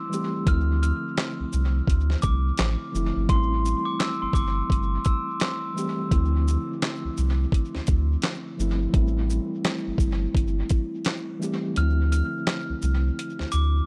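Boom-bap hip-hop with a tough, dark mood, cut from a longer piece, where a gritty, pitched-down sampler drum kit with a thumpy kick and handclaps sits up front beside a round sub bass. A mellow tine electric piano carries the Dm7 to Am7 changes, and a bell-like glockenspiel rings in from 0.5 seconds and returns at 11.8 seconds, when the kick drops out, with the drums, piano and glockenspiel swimming in heavy dub echo.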